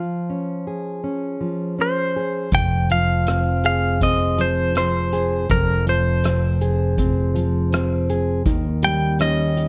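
This short excerpt of a melancholic, reflective acoustic folk-pop ballad opens with a bright, twangy clean electric guitar carrying the melody over a fingerpicked steel-string acoustic guitar, both placed up front from the very start. The electric guitar has a scooped, compressed, direct tone colored by harmonic tremolo, while the acoustic sounds full-bodied and warm, with audible finger squeak. At 2.5 seconds a fretless electric bass enters with an ensemble chorus, joined by a soft-mallet drum kit whose dark, smooth hi-hat, boomy kick and rim click have a rolled-off top. The piece moves at 81 BPM in a straight 4/4 in F minor, its chords passing from Db to Fm and then to Eb7 at 8.5 seconds. The close, detailed recording carries little reverb, keeping the guitars intimate and present.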